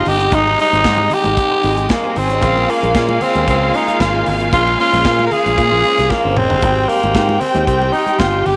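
Set in a small room with a moderate spring reverb, this celebratory, danceable disco excerpt is led by a raspy, growling tenor saxophone up front. A dark, woody string section carries a second line, a clear, smooth string section holds sustained chords in the background, and a slightly broken-up, compressed electric guitar accompanies quietly. A bright, growly fingered electric bass and an acoustic studio drum kit with a tight kick and medium-tuned snare enter at 0.1 seconds, joined by very quiet, close and dry congas. The harmony moves from Abmaj7 to Bbm9, and a drum fill at 6.1 seconds leads into a Bb7sus2 chord.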